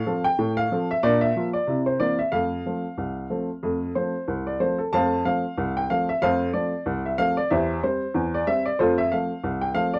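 A dry, close recording with a 1970s studio character and a touch of light reverb opens this cheerful ragtime excerpt. A single upright piano carries the whole piece alone, its tone warm and woody with a short sustain, placed up front in the sound. The music moves at a jaunty 93 BPM in 2/4, with a gentle swing on the sixteenth notes, and sits in F major with the piano tuned slightly high to A4 = 444 Hz. The piano spans a range from C2 to A5, and the harmony moves from F through Bb and C7 back to F. The passage falls into two sections, the second arriving at 4.9 seconds and turning through C/E before settling on F again near 8.8 seconds.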